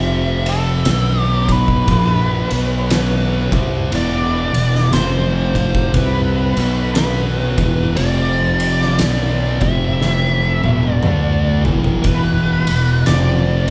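Sludgy and brooding, this stoner and doom metal passage crawls at 59 BPM in 4/4 with a swung eighth-note feel, cut from a longer piece. Two thick fuzz guitars grind out a dark, distorted riff set back in the mix, while a fuzz fingered electric bass adds a growly, overdriven low end beneath them. Over the top, a compressed fuzz lead guitar carries the melody through wah and distortion. A tonewheel organ sits very quietly underneath with lightly overdriven sustained chords, its slow rotary speaker, vibrato and key click giving a clear shimmer. An oversized low-tuned drum kit enters at 0.5 seconds, up front with a punchy kick, fat snare, ride and toms in a bright, pumping stone room, and plays a fill from 10.0 to 12.1 seconds. The harmony circles around F5, B5, E minor and E5, and the whole band sounds like it is playing live together in one room with light reverb.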